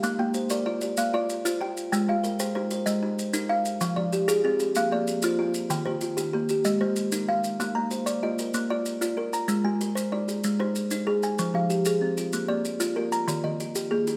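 Hypnotic and rippling, this southern African traditional fragment of a longer piece turns an mbira-style interlocking cycle in 12/8 at 127 BPM, circling through Bb, Ab, Fm and Eb chords in Bb mixolydian. Two kalimbas spin arpeggios throughout: one woody and up front with a short thumbnail pluck, the other softer and more airy, its fingertip-plucked notes ringing through tape echo. Grainy maracas sit low beneath them, and the whole is caught by close, detailed microphones in a moderate recital hall reverb.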